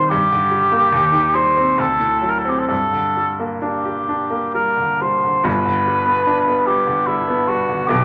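Elegiac and solemn, this short romantic classical passage for cor anglais and grand piano unfolds in triple metre with a freely flexing, rubato pulse. The mellow cor anglais carries the melody in its middle register, its tone softened by a light vibrato and a distant, roomy quality even as it sits up front. Beneath it, a bright baby grand piano supplies the accompaniment from deep bass up through the middle of the keyboard, its brilliant, intimate sound carrying audible action noise. The harmony moves through a minor-key progression in the opening section before turning to a major chord at 5.5 seconds, where a second section begins. A generous, wet studio reverb surrounds the pair, giving this fragment of a longer piece a spacious, mournful glow.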